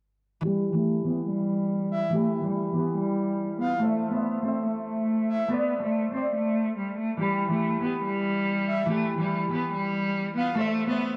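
A bowed cello with smooth vibrato carries the melody from 0.4 seconds, alongside a ringing, fingerpicked concert harp. Both pass through a low-pass filter and analog delay as a filter sweep runs across this ominous, menacing half-time hip hop fragment. A soft, breathy flute-like synth lead with a sub octave and chorus adds a second line in two brief passages starting at 1.9 and 8.7 seconds, while light studio reverb and heavy echo shape the mix over alternating Em and Am chords.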